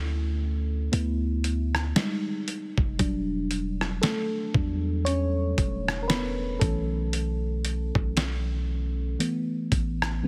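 A slow 58 BPM groove in 4/4 with a lazy 16th-note swing anchors this short contemporary R&B passage in E dorian, cut from a longer piece and carrying a longing, late-night mood. The mellow FM electric piano and a deep, boomy 808-style bass open together at 0.0 s, the piano taking the lead as a solo voice with soft, round, dark chords that carry a faint noise layer and a shimmer of chorus and phaser. The dusty sampler-style drum kit joins at 0.9 s, a gritty, compressed kit with a thumpy kick, fat snare, rim click and hi-hat that sounds re-recorded in a small room. Under it, the sine-like bass notes strike quickly and then decay. The harmony drifts from a rootless B7sus4 through Asus2/4 over D, Fm9 and a lingering Em9, returns to B7sus4 at 6.6 s, and settles on Asus2 near 9.2 s. Every part sits up front in a light reverb, and the whole mix is squeezed into a heavily compressed, radio-like sound.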